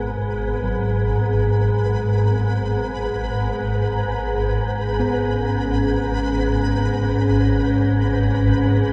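This dark ambient drone excerpt floats in free time, tuned slightly sharp to A4 = 441 Hz, and from the first second four layers sound together across its 8.9 seconds. Most prominent is a swarming, tense drone in the low register, up front, with a detuned, granular body and a moving notch. Above it sits a deep, moody pad holding sustained chords, its sawtooth and sine layers given a wave-folded, ring-modulated edge with chorus and a long release. The harmony rests on E before shifting to C# at 4.4 seconds. Very quiet bronze gongs of a gamelan type play low arpeggios with a round, beating, vintage tone, while a flickering grainy texture hovers on a single high note. A huge, cavernous reverb with a long tail wraps the whole mix, leaving an unsettling, suspended atmosphere.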